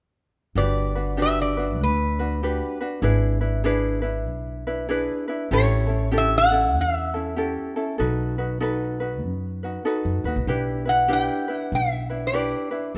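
A nasal, metallic resonator slide guitar played with fingerpicks carries the melody up front in this sunny, dreamy Hawaiian clip cut from a longer piece, with light fingerpicked ukulele and woody pizzicato upright bass on steel strings joining it from 0.6 seconds in a swung 4/4 over chords moving from Gmaj7 through E7/G#, A7 and B7 to Em7/B, all set in light reverb.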